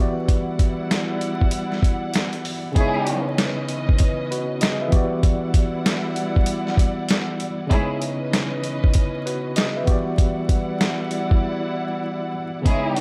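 A swung 97 BPM boom-bap groove in 4/4 is driven by a compressed, pitched-down sampler-style drum kit with a thumpy kick and medium-tuned snare, re-recorded in a large room and sitting up front over a bed of vinyl crackle. A worn, slightly out-of-tune tine electric piano, lightly overdriven through built-in speakers, carries the accompaniment alongside sustained chords from a woody, close bowed string section with vibrato, moving between Em9 and C#m9. Dark, expressive string stabs with slapback echo punctuate this tough, gritty hip-hop from 2.8 seconds, with a brief break at 11.4 seconds.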